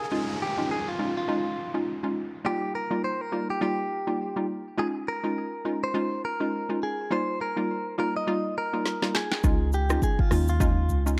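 Romantic and breezy, this afrobeats excerpt at 103 BPM with a light 16th-note swing rocks between Dbadd9 and Ebadd9 as a bright, twangy clean electric guitar carries the melody through spring reverb and delay over a hollow, bouncy, detuned square-wave pluck with chorus, while an electronic riser and downlifter color the opening until 4.8 s, an afro-pop drum kit with deep kick, woody snare, crisp hats, rim click and shaker bursts in with a fill at 8.9 s, and a mellow tine electric piano takes the bass line from 9.4 s, all set in a dark digital ambience.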